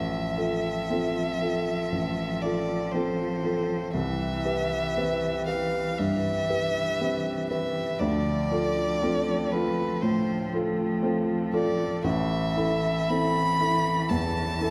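Reflective and longing, this rubato neoclassical passage, cut from a longer piece, sets a close, focused solo violin singing the melody with vibrato over a smooth-topped bowed cello line, a woody, up-front upright piano accompaniment and a reedy, breathing vintage pedal harmonium holding chords in the background, all moving through Fmaj7/A, Cmaj7, Dm7 and Am in a wet recital-hall reverb.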